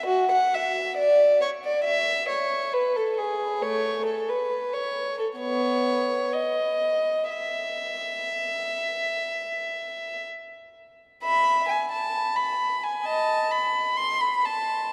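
A long cathedral reverb, about 4.4 seconds, surrounds a single violin that sits close and up front, giving this excerpt from a longer baroque-style suite movement an intimate yet spacious sound. The solo violin plays unaccompanied from the start, with a dark, smooth tone, soft attacks and light vibrato, bowed sul tasto over a range from A3 up to C6. The mood is radiant and flowing, set at a slow 60-68 BPM in 4/4, with a rubato feel that lets the line breathe. The key settles into E major from 3.6 seconds, and the music moves into a second section at 11.2 seconds before the excerpt ends at 14.9 seconds.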